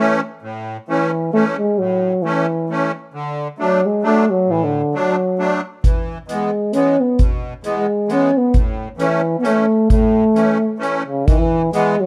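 This alpine folk dance-band piece is a jolly, bouncy number in 3/4 at 133 BPM in A major, with a lightly swung eighth-note feel, cut from a longer piece. A euphonium carries the melody in a classical style with light vibrato, its warm, roomy tone sitting up front yet with a slightly distant quality. Underneath, a musette accordion supplies the accompaniment, reedy and shimmering with its musette tuning and an airy character. At 5.8 seconds a street-band drum kit joins on hi-hat and a boomy kick, sounding dark and smooth with a rolled-off top and the acoustic breadth of a big room. The harmony moves through A, D and E before returning to A and closing on E, and the overall recording is close and detailed with little reverb.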